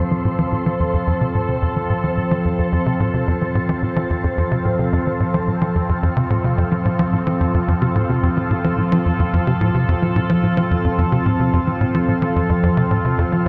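Ambient, sequencer-driven space music in F major, moving at 109 BPM in a straight 4/4 with a luminous, expansive mood, this is cut from a longer piece and rests on a single F chord throughout. A tight, punchy sequencer bass drives a riff from F2 to F3, its sawtooth and square-wave tone shaped by a filter pluck with a fast attack and a moving notch, touched with subtle chorus and delay. The bass also carries a filter sweep across its full 13.5 seconds. Up front beside it, an evolving wavetable pad holds sustained chords between F3 and A4, its sine-based, vintage sound morphing and warbling through chorus and a shimmer reverb with a slow attack and long release. In the background, a breathy, wind-like tuned noise texture drifts between F3 and C5, bathed in shimmer reverb. The whole mix sits in a vast, echoing cathedral-like space with a 6.6-second reverb tail.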